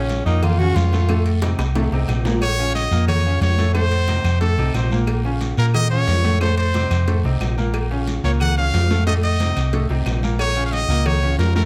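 Salsa with a danceable, driving energy, this short cut from a longer piece opens on a clear, forceful tenor saxophone solo with light vibrato and a plate reverb sheen, heard only in the first 1.3 seconds. Beneath it, a bright concert grand piano supplies accompaniment with deep bass presence, while a dark, round hollow-body electric bass sits up front through the whole passage. A drum fill arrives at 1.4 seconds, and at 2.4 seconds a brilliant, punchy trumpet takes over the melody, close-miked and up front with its own plate reverb. The harmony alternates steadily between Bbm and F7. In the background, a thick percussion bed of high-tuned congas struck with hard hands, tight cowbell and bongos, ringing metal-shell timbales with agogo bells, and a raspy guiro keeps the groove moving, with very quiet, woody claves sitting close and dry.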